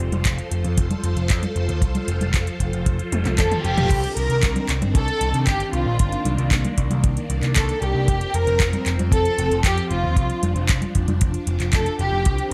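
Italo disco in a melodramatic, bittersweet mood, cut from a longer piece: a swirling, vintage string machine holds sustained chords through ensemble chorus and phaser, while an overdriven, round picked electric bass punches up front. A house drum kit of metallic hats, congas, handclaps, toms and crash adds a layered, gritty edge over a dry, tight kick drum, and a background reverse cymbal plays with a drum fill at 3.1 seconds. From 3.4 seconds a lush, bowed violin section carries the melody with vibrato and tape echo, close and smooth, and the mix sits in a small room with light reverb.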